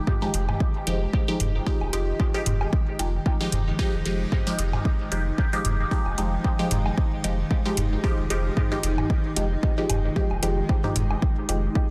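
A blurred granular cloud pad and a muted, detuned sawtooth chord stab open this nocturnal, hypnotic dub techno piece together on a single sustained chord: the stab sits dark and up front with phaser, a moving notch and dub echo, while the pad hangs full-bodied in the background inside its own reverb. An overdriven, layered kick lands almost at once, deep and up front, joined by metallic hats and by analog toms and woodblock that sit farther back, all roughened by overdrive and re-recorded in rooms. A round sine sub bass holds one low note, and the bass, pad, stab, toms and woodblock pump under sidechain compression. The groove carries a light swing on the 16ths, and the mix is dense and heavily limited, with little reverb of its own. At 11.7 s a very quiet, bubbling resonant texture with random filter steps and chorus slips in just as the cut from a longer track ends.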